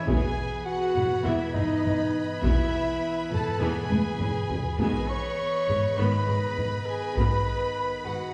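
Set back in a reverberant recital hall, this heroic, relentless epic orchestral film-score cue, cut from a longer piece, has lush vibrato violins singing the melody alongside an airy, distant flute and a second studio violin line, with mellow French horns, a clear woodwind section and very quiet trombones holding sustained chords, a solo trumpet stabbing in the background, violas with portamento, a woody double bass and a very quiet rich cello anchoring the bass, and a heavy-sticked taiko ensemble driving the cue with a fill from 3.9 to 4.8 seconds as the harmony moves from E to G#m.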